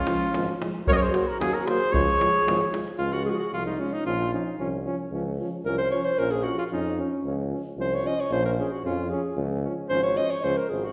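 Exuberant and festive, this Balkan brass band piece in Db major moves at 113 BPM in a straight 2/4, with a mellow, vintage-toned trumpet carrying the melody up front and a deep, close davul driving the beat until the trumpet drops out near 2.7 seconds and the davul just after. From 3.0 seconds the vibrato-inflected alto saxophone takes over as a solo, moving between Db and Bb minor chords. Underneath, a warm trombone with light vibrato, a distant, roomy euphonium and a clear tuba bass provide a classical-style backing in the reverberant wash of a recital hall.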